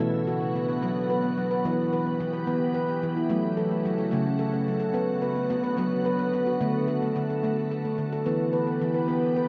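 A ringing, bright handpan sits up front with sharp finger strokes, playing arpeggios through tape echo and shimmer reverb in this gentle, meditative world piece in B minor, moving in a slow 6/8 at 73 BPM. Beneath it, a soft, pure organ-like pad with a detuned, chorused sheen holds sustained chords through Bm, Em, F#m, Bm, D and Em, its slow attack and long release blurring into shimmer. Both parts play throughout this short extract, set in a wet echo-chamber space with a studio ambience.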